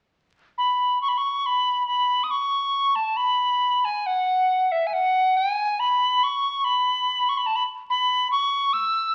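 Crackle from a very old 78 rpm record sits under a moderate large-studio reverb, giving this short slice of a longer Celtic folk piece a nostalgic air. A lone wooden whistle plays from 0.6 to 9.1 seconds, placed up front with a pure, bright tone, a crisp, chiffy attack and vibrato. Its line moves between E5 and E6 at a slow 70 BPM in 3/4, and the beats fall unevenly with a free, rubato feel. A first phrase gives way to a second passage at 3.2 seconds, keeping the pastoral mood. The tuning sits slightly sharp of standard, at A4 = 441 Hz.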